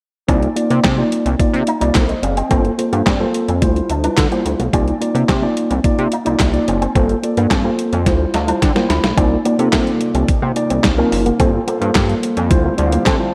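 A mellow tine electric piano provides the accompaniment in this funky, slick stretch of early-eighties boogie funk, its clean tone placed up front with a slapback echo and adding fills at 8.1 and 12.5 seconds. Beneath it, a chorused synth bass with a glossy, retro pulse-and-sawtooth sound and filter sweeps holds down the low end. A detuned 8-bit drum machine supplies a thumpy kick, medium-tuned snare, hi-hat and handclaps with a tape-warm, sampler-style character, and it plays a fill of its own leading into the second section. In the background, a bright, twangy electric guitar plays a picked riff through an envelope filter and subtle chorus, and at 9.2 seconds a very quiet, shimmering pulse-width pad enters with sustained chords. The groove runs at 108 BPM in straight 4/4 in C dorian, cycling through Cm11, Gm11 and Dm11, while a recital hall reverb with digital ambience lends the mix a big arena sound in this cut from a longer piece.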